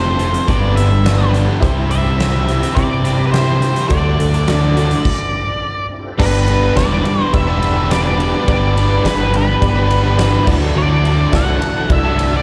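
Heard live through a venue's PA with a recital-hall sheen, this swaggering, driving classic rock fragment puts a punchy, up-front arena drum kit with bright cymbals and a fat snare alongside a round picked bass, while two biting overdriven guitars play their riffs in the background, a dark octave-fuzz lead carries the melody with slapback echo, a faint rotary-speaker tonewheel organ holds sustained chords, a jangly, detuned honky-tonk upright piano joins at 1.6 seconds, and the band hits a stop from 5.0 to 6.2 seconds.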